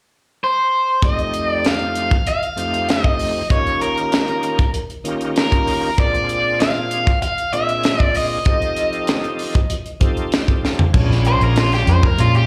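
Laid-back and soulful, this straight-eighth soul blues is cut from a longer live gig heard through the venue's PA, with a light club reverb around the band. An overdriven, picked electric guitar opens alone at 0.4 s, carrying the melody up front with plate reverb and slapback echo. At 1.0 s a tight funk drum kit joins with a high-tuned snare and tight kick, alongside a shouting tonewheel organ full of key click, chorus vibrato and slow rotary speaker, lightly overdriven and wrapped in the same plate reverb and slapback echo. The harmony moves through F7, Eb7 and Bb7 back to F7, and an organ fill and then a drum fill lead into a Bb7#9 chord. There, at 10.9 s, the guitar breaks into a solo as a vintage, foam-muted fingered bass finally enters, dark, round and punchy, sitting prominently in the mix.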